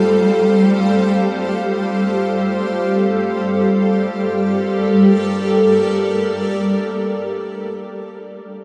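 Ambient music in free time and G minor, reflective and melancholic, cut from a longer piece and bathed in a huge, wet reverb. A dark, woody bowed cello with vibrato sings a brief melody on G3 through a diffuse ambient delay, stopping at 2.7 seconds. Meanwhile an up-front granular cloud pad, blurred and full-bodied with slow attacks and long releases, sustains evolving, detuned chords from Fadd9/G to Gmadd9 at 3.6 seconds and ends at 7.6 seconds.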